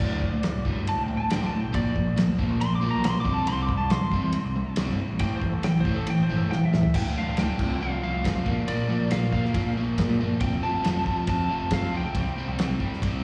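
A twangy, slightly broken-up lead guitar solo with slapback echo and plate reverb opens this gritty, brooding classic rock excerpt over a double-tracked, up-front overdriven rhythm guitar riff with spring reverb, a growling overdriven picked bass and a cloth-damped, thuddy drum kit with dark cymbals, whose fill at 6.5 seconds leads into a new section at 6.9 seconds, the whole performance captured as a live gig through the venue's PA in a reverberant recital hall.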